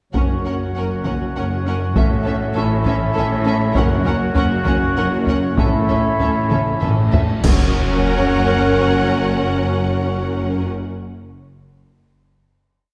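A lush, reverberant orchestral sound heard from well back in a scoring stage opens this short, adventurous and triumphant film-score cue in F# major, moving at 99 BPM in a straight 3/4 as the harmony alternates between F# and A before landing on a final F# chord at 7.4 seconds. Two bowed violin sections carry the vibrato-rich melody and a second line in repeated notes, with violas sliding expressively in the background, while a dark French horn section, warm woodwinds with light vibrato and a mellow, vintage-toned trumpet sustain the chords above cellos and woody double basses holding the bass on the beats. A hard-stick taiko ensemble drives a big drum ostinato, joined from 3.8 seconds by bright cymbal swells, crashes and bass drum strokes, and a drum fill leads into a full-band accent at 7.4 seconds before the final chord rings out.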